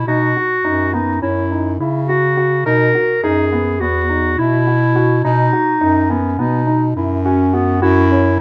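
Closely miked with light reverb, this short, detailed excerpt of contemporary chamber music in B major moves in a restless 9/8 at 209 eighth-note beats per minute, with a hopeful, unsettled mood. A dark, roomy clarinet carries the second line up front while a warm bass clarinet anchors the bass, both heard throughout in a classical style. A mellow concert grand piano with deep low end weaves arpeggios over chords moving from B to F#5, B6, Esus2 and back.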